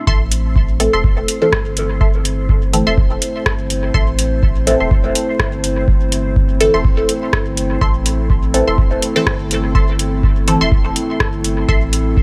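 Dub techno at 124 BPM in A minor, this hazy, nocturnal excerpt rests on a single A minor chord, with a 16th-note swing and a film of vinyl crackle over a dry, close-sounding room. A deep electronic kick and a booming analog drum machine, up front with metallic hi-hats and rim clicks thrown into dub echo, drive the groove, while a soft, round sub bass sits low beneath them with sidechain pumping. A dark analog pad holds sustained chords from the very start, its slow attack and long release softened by subtle chorus. Two filtered dub chord stabs carry the motion: a higher, nasal, mellow riff from 0.1 s with phaser, 12-bit sampler grit and dub echo, and a louder, brighter, wave-folded stab entering at 0.8 s and stopping at 10.6 s, also phased and echoed. Both stabs pluck with a fast attack and short decay, pumping with the kick, so the whole piece breathes with a dim, tape-tinged haze.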